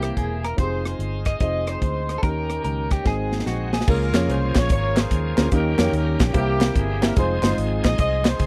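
A dry, close recording with a 1970s studio feel and little reverb frames this short, jubilant slice of uptempo gospel, swinging at 146 BPM in 4/4 with a hopeful lift. A tight funk drum kit sits up front with bright cymbals, a medium-tuned snare, rim clicks and a tight kick, and it plays a fill from 3.1 to 3.9 seconds that leads into the second section. Beside it, a vintage foam-muted fingered electric bass gives a dark, round, punchy low end, while a woody upright piano comps through chords moving from C7 and Fm7 toward Db6. A horn section with light vibrato carries the melody from a distant, roomy place, joined at first by a clean, compressed electric guitar with tremolo that drops out at 3.9 seconds. A shouting, lightly overdriven tonewheel organ holds sustained chords in the background, its slow rotary speaker and key click adding motion, and hollow group handclaps enter at 4.1 seconds.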